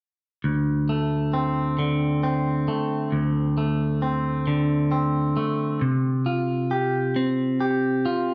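A clean, twangy electric guitar opens at 0.4 s with picked arpeggios in D minor, sitting up front with a bright, scooped, compressed tone and a slapback echo, moving from D5 to Csus4 at 5.8 s. This brooding, melancholic rock excerpt moves in a slow 6/8 at 45 BPM counted in dotted quarters. A wet recital-hall reverb and a dark production lend the lone guitar a shadowed sense of space.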